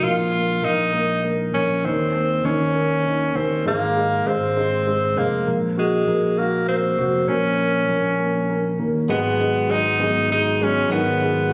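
Caught on a phone in a small club, this short cut from a longer six-eight pop ballad has a light reverb and small room ambience, moving slowly at 66 BPM with a melancholic, dramatic mood. Up front, an edgy, forceful tenor saxophone carries the jazz-style solo melody with scooped notes and an analog delay, over a concert grand piano with deep bass and audible action noise, and an amped, direct fingered electric bass. At 9.1 seconds, as the harmony shifts to Abm7, a bright, full-bodied steel-string acoustic guitar joins in the background with picked arpeggios.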